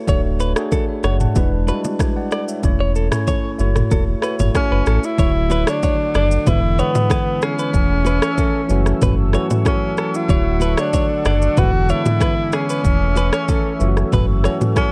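Joyful and breezy, this afrobeats excerpt pairs a clean tine electric piano and a bright, twangy, direct-recorded guitar riff with delay over a deep, up-front sine sub bass, an electronic afro-pop kit with a deep kick, rim clicks, shaker and toms, and very quiet, close congas and bongos, before a breathy tenor saxophone enters with a mellow, scooped jazz-style solo at 4.6 seconds and a moody, detuned sawtooth pad with chorus and sidechain pumping sits in the background from 6.1 seconds, all coloured by the warble of worn cassette tape.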